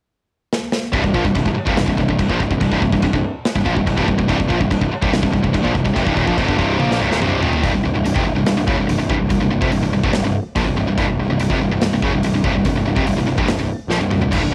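A straight 4/4 pulse at 144 BPM launches this heavy, epic C minor metal excerpt, with a big acoustic rock kit of bright cymbals, a medium-tuned snare and a boomy kick kicking off with a fill at 0.5 seconds and returning with fills at 6.8 and 13.9 seconds. Two bright, distorted picked guitars share the riff, one high-gain and up front, the other tight and set back, while a growly, fuzzed-out picked bass underpins them as the harmony moves from C minor to a bare C power chord at 7.6 seconds. The sound carries a cassette-tape home-recording character with light reverb.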